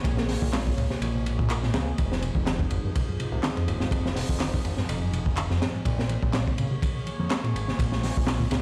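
A crunchy breakbeat kit drives this raw, swaggering breaks excerpt at 124 BPM with a light 16th-note swing, its punchy kick, high-tuned snare, hi-hat and dark ride cymbal sitting gritty and up front, joined by layered, tape-warm electronic handclaps from 0.5 seconds. A fat, tube-saturated analog bass holds the low end under a rubbery acid bass riff that enters at 0.1 seconds with a resonant filter sweep and cassette-tape tone, set back in the mix. Over the Bbm7 to Fm7 changes, a swirling, detuned pad adds phaser, chorus, 12-bit sampler grit and sidechain pumping, and the whole track sounds as if played through a big sound system in a bare stone room with vinyl crackle.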